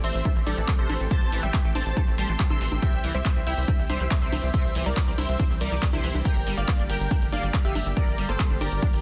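Uplifting trance at 140 BPM in a driving, euphoric mood, this short cut moves through Am7, C and Gm as a punchy, detuned supersaw stab carries the melody with delay, while a silky, bright string pad holds sustained chords and a squelchy, resonant acid bass spins chorused arpeggios in the background. Underneath, a tight sawtooth sequencer bass drives the low end, and an overdriven analog drum machine supplies congas, handclaps, hi-hat, ride cymbal and shaker, joined at 0.3 seconds by a dry, up-front electronic kick. Sidechain pumping on the synths, bass and percussion keeps the whole groove breathing against a light reverb and a dense, heavily limited modern master.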